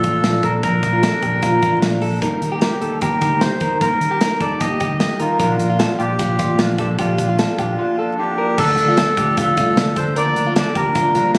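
Nostalgic and bright, this jangly indie pop fragment moves at 151 BPM in a straight 4/4, with a reedy, breathy melodica carrying the tune up front over a chord path from Bb to Eb and back, turning to Dm and Bb/D at 8.6 seconds. Two slightly broken-up electric guitars through a small old amp fill in beneath it, one playing picked accompaniment through an ensemble chorus and the other picking lo-fi arpeggios through a phaser, while a round, foam-muted vintage bass and a big rock drum kit with a punchy kick, medium-tuned snare, hi-hat and crash drive the groove. The whole mix sounds as if captured on a phone in the room, with club reverb, light room reverb and a layer of vinyl crackle adding to its faded, homemade charm.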